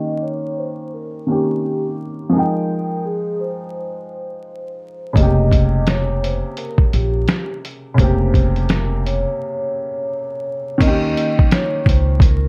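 Lo-fi hip hop at 85 BPM in Bb dorian with a swung sixteenth feel, this reflective, hazy piece opens on a mellow soft-mallet vibraphone melody with slow motor vibrato, set over a clear, woody upright piano that sits up front in plate reverb, with both parts low-pass filtered. At 5.2 seconds a pizzicato upright bass with steel strings joins a compressed, sampler-style drum kit whose thumpy kick, snare, hi-hat and crash sound muffled, as if re-recorded in a large room. A filter sweep runs through the opening section and a break arrives at 9.4 seconds, all within a dark production dusted with vinyl crackle and light reverb.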